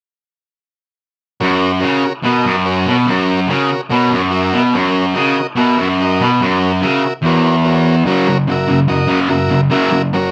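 Swaggering and raw, this short rock excerpt at 144 BPM in F# mixolydian pairs a bright, double-tracked fuzz guitar riff, picked low and up front, with a vintage, buzzy combo organ holding overdriven sustained chords under light vibrato, both playing from 1.4 to 10.3 seconds in a moderate studio room, with the music shifting into a new section at 8.1 seconds.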